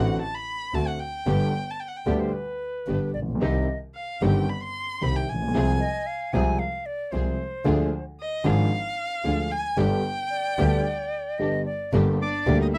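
Tango, tense and sultry, in a short cut from a longer piece: a distant, expressive bowed violin sings with vibrato and portamento over an up-front piano with deep bass and a biting, nasal bowed double bass, while a rich string section places smooth stabs in the background, a crisp, airy silver flute joins at 2.1 seconds, the violin's solo runs to a break near 10.9 seconds, and a reedy bandoneon takes the melody at 12.2 seconds, all in a dry, close 1970s-style studio sound with light reverb.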